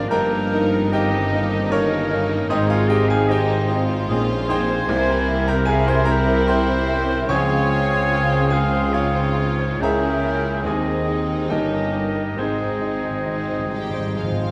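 This passage, cut from a longer piece, sits in a moderate scoring-stage reverb captured by close, detailed microphones, giving a lush, lyrical orchestral sound in Ab major with a rubato 3/4 feel drifting between 62 and 77 BPM. A bright, brilliant grand piano carries the melody up front, polished and intimate with long sustain and audible action noise, while a soft-attacked violin section floats the tune in the background, played sul tasto. A clear solo oboe with vibrato plays a second line, joined by an airy flute section with rolled-off highs, a background clarinet and a very quiet, woody violin section, as violas and a close-miked bassoon fill the accompaniment. Beneath them, very quiet horns and trombones hold sustained chords until 12.7 seconds, and the bass is shared by a smooth tuba, an intimate chamber cello section and a double bass section. The harmony moves from Eb/G through Ab, C7, Dbmaj7 and a darkening Dbm before settling back on Ab, where timpani with hard mallets and calf heads enter at 12.4 seconds for an articulate, dry fill.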